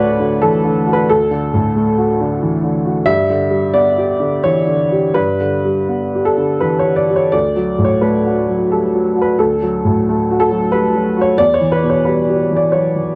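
A lone upright piano opens this hopeful, peaceful excerpt of neoclassical minimalist music, moving in a rubato 3/4 at around 82-92 BPM in D major and tuned to A4 = 436 Hz. The piano's woody, slightly detuned, vintage tone has a long sustain and sits up front in a moderate studio reverb, spanning D2 to E5 as the harmony moves from D to G, back to D, and onto Em at 11.4 s. The production is dark, and the piano plays solo for the full 13.2 seconds.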